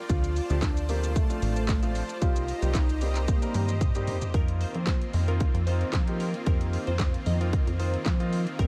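Driving and confident, this dance-pop excerpt moves at 113 BPM in a straight 4/4, opening on Dm7 and shifting to Cm7 before settling on F7sus4 at 4.3 seconds. Up front, a punchy pop drum kit of kick, fat snare, hats, handclaps, shaker and toms pairs with a plucky, funky analog bass whose dark sawtooth and pulse tones decay quickly under a moving notch filter. The bass pumps alongside the lush detuned supersaw pad and the clear concert grand piano, whose intimate sound carries audible action noise. A velvety synth lead sings the melody with vibrato, chorus and tape echo until 3.8 seconds, and a drum fill runs from 3.3 to 4.3 seconds. From there a glassy, crystalline wavetable pluck takes over the melody in the background, coloured by chorus, tape echo and a filter sweep. Light reverb and digital ambience frame the mix.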